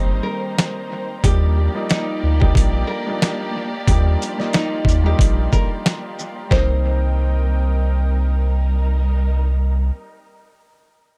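A swung, head-nodding boom-bap groove drives this tough, gritty hip-hop fragment, with a sampler-style drum kit of thumpy kick, medium-tuned snare, hi-hat and shaker entering at 0.6 s and dropping out at 6.7 s. The pitched-down, compressed kit is overdriven and sits up front beside a deep, round dub sub bass whose sustained, fast-attack tone holds the low end throughout. A woody upright piano carries the accompaniment through a tape-worn haze and dub echo, while a distant studio string section adds expressive bowed stabs with vibrato and portamento. A bright, fingerpicked nylon-string guitar plays the classical-flavoured melody from 0.2 s, its lines also trailing into echo. In the background, a smooth, detuned sawtooth pad with chorus swells in slowly under minor-seventh and major-ninth harmony, and the dry, echo-heavy mix moves into a second section at 6.5 s before this cut from a longer piece ends.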